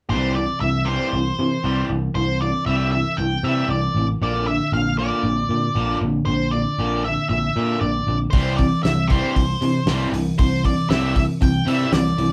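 A straight 4/4 pulse at 117 BPM drives this swaggering classic rock excerpt in C mixolydian, moving from C to Bb and back to C. Up front, a dark octave-fuzz lead guitar carries the melody over a bright, overdriven semi-hollow guitar riff and a punchy, amped picked bass. At 8.3 seconds, a dry cloth-damped drum kit with a fat snare, tight kick and rolled-off top arrives alongside a distorted electric guitar riff in the background, the band playing live in one room with moderate studio ambience.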